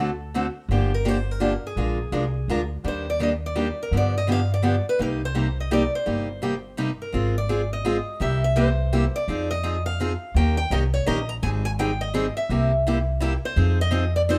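A bright, boxy picked parlour guitar carries the fiery, virtuosic melody with audible finger squeak over a second steel-string guitar's accompaniment and a woody, thumpy pizzicato upright bass on gut strings, all three up front in light reverb, in this swinging jazz manouche waltz cut from a longer piece, whose minor-key changes move into a second section at 7.1 seconds.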